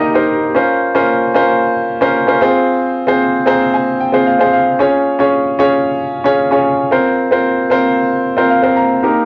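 A straight 4/4 pulse at 113 BPM drives this short pop piece in Bb dorian, tuned to A4 = 439 Hz, with an urgent, dramatic mood. A baby grand piano plays alone throughout, ranging from Bb3 to Bb5, and its sound is polished and up front, carrying the soft grain of cassette tape. The harmony moves from Eb through Bbmadd9 and Fm to Db, then settles on Bbsus2. Short piano fills punctuate the passage, including one near 3.2 seconds and another at 8.2 seconds. A wet studio ambience with a brief 0.5-second decay surrounds the instrument, giving the home cassette recording an intimate, close character.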